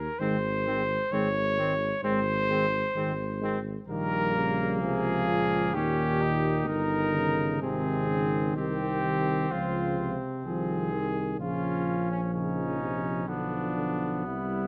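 In a flexible, rubato 4/4, this grave and heroic classical brass quintet passage, cut from a longer piece, opens with a smooth cornet melody up front over a mellow tuba bass, joined at 0.2 seconds by a vintage-toned trumpet second line, a dark French horn and a distant, roomy trombone with light vibrato in the background, set in light reverb and close, detailed microphones as the harmony moves from Ab through Bbm, Eb7 and Dbmaj7 to a closing Bdim.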